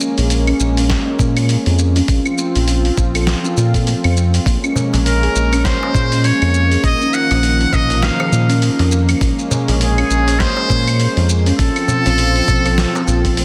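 A mystical organic downtempo excerpt in Bb minor at 101 BPM with a 16th-note swing, where a smooth, detuned analog pad with chorus and a woody, hollow kalimba through digital delay open over a dusty, gritty sampler-style kit of claves, hi-hat, shaker and snare, joined by a round, deep analog bass pumping under sidechain at 0.2 s and a thumpy electronic kick, before a small clay darbuka enters in the background at 4.8 s and a buzzy, thin metal-muted trumpet with light vibrato takes up the melody at 5.1 s, all sitting in light digital ambience under a dense, heavily limited master.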